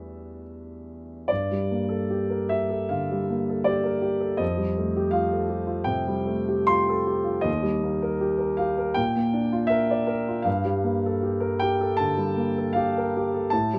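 A warm, open grand piano sits up front in this hazy, nocturnal piece of impressionist classical music, played solo in G minor at around 79 BPM in 4/4 with uneven, rubato timing across a range from Eb2 to C6. After a brief Em11 opening, the harmony moves at 1.3 seconds to Gm9, then passes through F9, Eb and Bb before returning to Gm9 at 10.5 seconds. Close, detailed microphones and light reverb capture the instrument in this short passage cut from a longer work.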